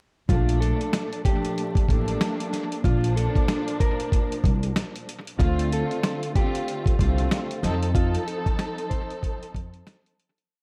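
A dusty, sampler-style drum kit sits up front in this short, soulful boom-bap hip-hop piece in Bb major at 94 BPM, its thumpy kick, medium-tuned layered snare and sixteenth-note hats swinging in a laid-back, gritty, compressed groove. An upright bass, played pizzicato with a woody, deep tone, anchors the beat with a looped line beneath chords moving from Bbmaj7 to Dm7 at 5.4 seconds and F7 at 7.6 seconds. A dark studio string section supplies lush, bowed, chopped chords repeated like a sampled loop, its smooth top softened by cassette tape character and analog delay. Over it, a mellow, clean electric guitar plays a short fingered melody that also loops, colored by vibrato, filtering and analog delay. The echo-heavy mix carries vinyl crackle and studio reverb, and the whole piece fades out from 7.9 seconds to its end at 10.5 seconds.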